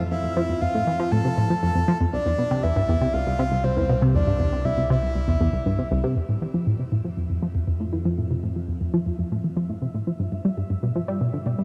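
A moderate plate reverb with a 3.8-second tail gives this short cut from a longer piece of ambient, sequencer-driven space music an expansive, luminous air. At 119 BPM in a straight 4/4 and F major, a tight, driving sequenced synth up front carries the riff, its detuned sawtooth and square tones shaped by a filter pluck and softened with chorus, cassette tape and delay into a mellow pulse. Beneath it an analog drone holds the bass, its pulse-width modulation and phaser keeping the low end slowly evolving. A breathy, flute-like lead sings the melody from the start until 5.9 seconds, soft and vibrato-tinged, with a sub octave and a noise layer, bathed in shimmer reverb and delay. After the harmony returns to F at 6.2 seconds, a bubbling texture of resonant, randomly stepped filter changes enters at 6.5 seconds in the background on a single high E, before the chords move to G.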